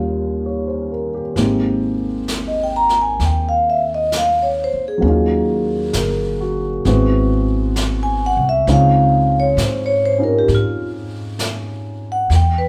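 A slow 66 BPM swing in 4/4, with lilting eighth notes, carries this late-night, intimate jazz ballad in Ab major, cut from a longer piece. It opens with a short break on an Eb7 chord, where the vibraphone and a dark, mellow concert grand piano with deep bass play together before the upright bass and brush drum kit enter at 1.4 seconds. From there the vibraphone, played with medium mallets and its motor off, takes a solo up front with a metallic, ringing tone over harmony moving through Abmaj9, Ebm9, Ab7alt and Dbmaj9. The pizzicato upright bass sits forward with a woody, steel-string sound, while the natural-sounding brushed snare and hi-hat stay low in the mix. The piano drops out at 12.3 seconds, and the band, playing live in one room, is bathed in a moderate large-studio reverb.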